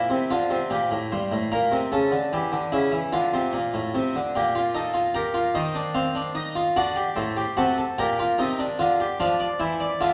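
A brilliant, plucked harpsichord in the Flemish style, with octave strings and an up-front presence, carries this serious, solemn baroque-style three-part fugue in G minor. Set in 6/8 at 49 BPM counted in dotted quarters with a straight feel, the short cut from a longer piece moves through harmonies from D minor and G minor to C minor and a D7 before settling on D minor near 9.2 seconds. The instrument is heard from further back in a recital hall whose wet reverb lingers around it.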